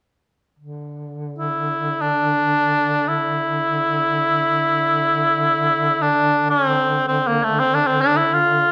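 A mellow cor anglais sings up front with light vibrato and a classical poise, entering at 1.4 seconds to carry a longing, solemn melody in D minor over a sustained duduk drone on D3. The duduk, sounding from 0.6 seconds, has a soft attack, vibrato and a smooth top, giving this free-time Caucasian folk fragment a rooted, solemn base. Moderate scoring-stage reverb lends both instruments a spacious, dignified glow in this short cut from a longer piece.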